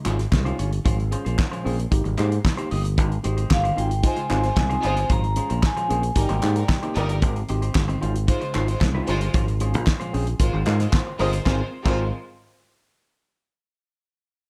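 A gritty, barky tine electric piano opens this joyful, celebratory 113 BPM disco groove in Ab major, joined at once by a fat-snared, tight-kicked 70s drum kit, a growly fingered bass up front, twangy clean guitar and hollow group handclaps, while a ringing vibraphone melody with plate reverb appears from 3.5 to 6.9 seconds and a lush, bowed violin section with slapback echo carries a second line from 4.0 seconds over the dark production and its major-seventh and minor-ninth chords.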